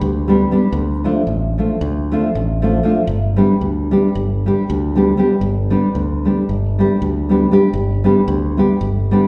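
Wild and virtuosic, this short cut from a longer Balkan folk piece in the Balkan wedding band style drives along at 231 BPM in 9/8 with a straight feel, moving between G and Dm in G mixolydian. A bright, direct fingered electric bass opens the cut holding the low end, and a dark, thumb-plucked classical nylon-string guitar joins a moment later, carrying the accompaniment up front. Both sit in a wet recital-hall reverb with the sound of a church or concert hall, and lossy compression artefacts are audible.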